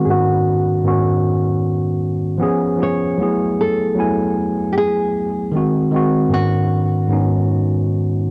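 A worn, slightly out-of-tune tine electric piano sits up front in this hazy, melancholic hip hop excerpt, its clean tone heard as if through built-in speakers and softened by a low-pass filter as it carries the accompaniment from G#2 to G#5. A fingerpicked nylon-string guitar enters at 0.1 seconds with a full-bodied, deep classical voice, playing the melody in a narrow span from F#4 to C#5 at a lower level, also dulled by a low-pass filter. The groove moves at 77 BPM in 4/4 with a 62% swing on the sixteenths, tuned to A4 = 437 Hz, and a filter sweep runs through the whole 8.3 seconds. The harmony moves from C#9sus4/G# through C#7, F#m11 and G#7 before returning to C#9sus4/G# at 6.3 seconds. Light reverb and small room ambience frame a dry, gritty sound marked by transformer saturation and cassette tape character.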